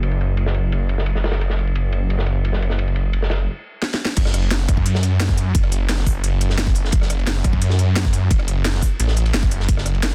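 Dark and aggressive, this excerpt from a longer piece of technical drum and bass in F# minor drives at 174 BPM in a straight 4/4. A snarling, distorted saw bass runs throughout from F#1 to F#2, growling and up front, its detuned unison sawtooth body thickened by tube saturation and pulled by sidechain pumping. Beneath it a crunchy breakbeat kit of ride and medium-tuned snare sits low in the mix, gritty and saturated in a small room, with dark cymbals and a rolled-off top shaped by filtering on the cymbals, snare and room. After a stop at 3.5 seconds, a second, produced kit with crisp hats, a rim click, crash and a cracking snare plays a fill from 3.8 seconds. The drop lands at 4.2 seconds with a tight, tape-tinged electronic kick pushed forward. The whole is a dense, heavily limited modern master.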